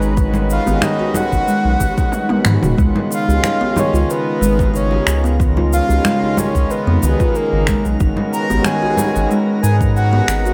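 A round, dark analog bass sits up front in this hypnotic, earthy stretch of organic downtempo, moving at 92 BPM in a straight 4/4 in G# dorian as the harmony shifts from G#m7 to C#7 and back to G#m7. Over it, a breathy, flute-like synth lead carries the melody with soft vibrato, subtle chorus and digital delay, while a reedy, breathing pedal harmonium with tape echo provides accompaniment and a smooth, warbling vintage pad with lush chorus holds sustained chords, both gently pumping. A glassy texture of drifting overtones shimmers faintly in the background, and from 0.2 seconds a woody, mellow kalimba adds short plucked arpeggios through tape echo. The rhythm comes from a deep, layered electronic kick and an overdriven electronic kit of cabasa, congas, finger snaps and toms in studio reverb, with a tight, cracking djembe sounding distant in a large room. The kick drops out between 2.1 and 2.8 seconds for a drum fill, and the whole passage sits in light reverb, cut from a longer piece.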